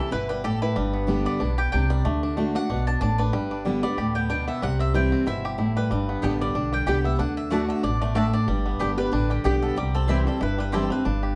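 Bluegrass in G major at a brisk 187 BPM with a swung feel, this rustic, virtuosic excerpt pairs a bright, woody mandolin melody with a twangy, percussive banjo played with fingerpicks over a full-bodied, up-front dreadnought guitar and a thumpy, dark pizzicato upright bass, while a second mandolin adds stabs from 6.2 to 10.8 seconds, all heard from further back in a small, reverberant room.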